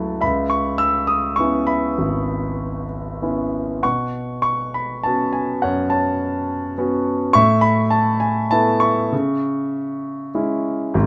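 A clear concert grand piano, up front with a deep bass and a natural tone, plays alone across the full 11.1 seconds of this lyrical classical excerpt in C# minor, reaching from G#1 to E6. The mood is brooding and cool, moving in 3/4 with a rubato feel between 91 and 108 BPM, as the harmony passes from C#m7 through Bsus2 and Asus2 before settling on C#m at 9.1 seconds. Light reverb surrounds the instrument.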